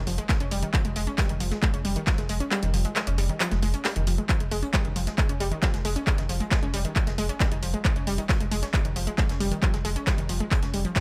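An echo-heavy mix with light reverb and studio ambience frames this dark, intense stretch of driving peak-time techno in straight 4/4, cut from a longer piece. A round sine sub bass, low-pass filtered and tube-saturated, pumps under a detuned sawtooth-and-pulse analog pluck riff whose bright, short-decay notes carry chorus, saturation, sidechain pumping and analog delay. The punchy, layered electronic kick, re-recorded in a small room, drops out between 2.5 and 4.3 seconds, while a tape-toned analog drum machine adds dub-echoed handclaps and hi-hat over a very quiet, natural brush kit playing hi-hat and snare.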